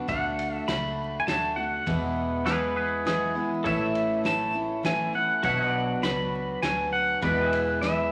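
A picked jumbo acoustic guitar opens this honky-tonk and classic country excerpt, full-bodied and up front with audible finger squeak, before a bright, compressed pedal steel carries the nostalgic, sunny melody with slide and volume swells at 101 BPM in a straight 3/4 lilt in A major. A dark, foam-muted fingered bass and a natural small-room drum kit with a fat snare, punchy kick and ride cymbal sit low beneath it. A twangy picked electric guitar adds a brief second line from 2.5 to 3.5 seconds, and a second pedal steel holds sustained chords in the background from 3.6 seconds, all bathed in a wet studio reverb with vinyl crackle over a D, E, A, Bm, E progression.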